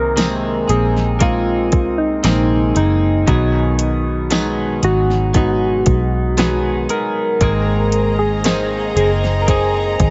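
Hopeful and tender, this slow pop ballad moves at 58 BPM in a straight 4/4, cut from a longer piece and built on a gentle shift from Abadd9 to Cb6 and back. A soft struck synth lead carries the melody with a round, keys-like FM tone, fast attack and decaying notes, colored by chorus, phaser and vibrato. Beneath it a felt-muted upright piano adds mellow, intimate accompaniment with audible action noise, while a direct-recorded clean electric guitar plays bright, compressed arpeggios through analog chorus. A vintage muted fingered electric bass sits up front with a dark, round, foam-muted sound, and a smooth R&B drum kit enters at 0.2 seconds with a soft kick, fat snare and metallic hats, the kit pushed through overdrive. A jingly tambourine rings distantly in the background of a large room until 8.7 seconds, and at 7.4 seconds a warm studio string section arrives with close, bowed sul tasto chords that have a soft attack and a smooth top. 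Light reverb and studio ambience frame the mix, which keeps its top end gentle.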